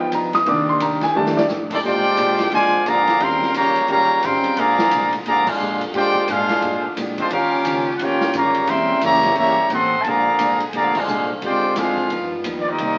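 A bright, brilliant grand piano opens this energetic big band swing excerpt, taking a solo up front over the first 1.8 seconds before a short drum fill hands off to the full ensemble at a brisk 175 BPM. From 1.7 seconds the clear trumpet section carries the melody up front with light vibrato, while a tight trombone section plays a second line beneath it and a soft-attacked saxophone section holds sustained chords in the background. A dark, clean hollow-body electric guitar and a woody, thumpy pizzicato upright bass sit low in the mix, supported by an airy, polished drum kit with a punchy kick, medium-tuned snare, hi-hat, ride and crash. The harmony moves through rich dominant colours such as Bb13 and Eb13, passes an Edim7, and closes on a turnaround to G7alt, with brassy band accents at 5.4 and 10.9 seconds. The whole excerpt sits in a wet studio reverb and carries the crackle of a very old 78 rpm record, giving it a vintage character.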